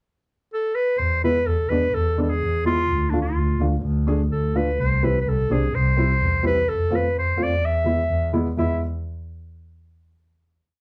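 A bright, classical-style clarinet enters on the pickup at 0.5 s with an ornamented modal melody, up front in this soulful, bittersweet klezmer piece, joined at 1.0 s by a dark, bowed double bass playing a smooth quarter-note figure sul tasto with light vibrato, and at 1.2 s by a mellow, woody upright piano sounding short off-beat triads, the trio heard from further back in a small room before closing on a final chord.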